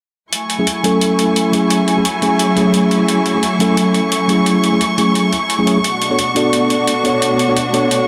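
Bathed in a moderate plate reverb, this dreamy, soulful liquid drum and bass excerpt at 174 BPM in F# minor sets a vibrato-rich, softly bowed studio string section holding sustained chords against a mellow tine electric piano that carries a low-pass filter sweep and dub echo, while a gritty, compressed electronic hi-hat runs from 0.3 to 8.0 seconds as the harmony moves from F#m9 to Bm9 at 5.8 seconds.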